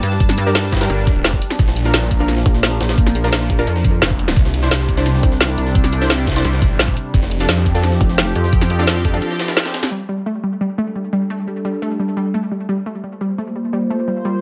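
Dark technical drum and bass at 173 BPM in G dorian, tense and cut from a longer piece, opens on a drop where an overdriven kick knocks beneath a woody-snared, bright-hatted kit, a very quiet gritty jungle-style kit, a pulsing pluck wobble bass and, from 0.9 s, a snarling detuned saw bass with tube saturation and sidechain pumping. Bold orchestra-hit-like stabs with tape echo and an evolving, chorused resonant pad ride over the chords, and a band accent lands at 9.6 s during a brief break. By 9.9 s the drums, basses and stabs have dropped away, leaving a lush, warbling unison pluck arpeggio and the pad, its filter sweeping, over G5 and Bb5 chords in a light digital ambience.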